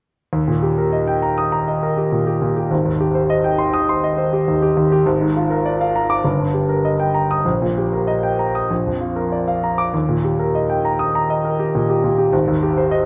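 A clear concert grand piano plays alone and up front from 0.3 to 13.1 s, with a deep bass, natural tone and long sustain across a range from G1 to Eb6. This sparkling, heroic fragment of a classical virtuoso piano study moves at 101 BPM in 4/4 with a rubato feel, in Eb major. Its harmony passes from Eb through Abmaj7, Bb7/Ab and Eb/G to Bb before returning to Eb and Abmaj7, all set in the generous reverb of a recital hall.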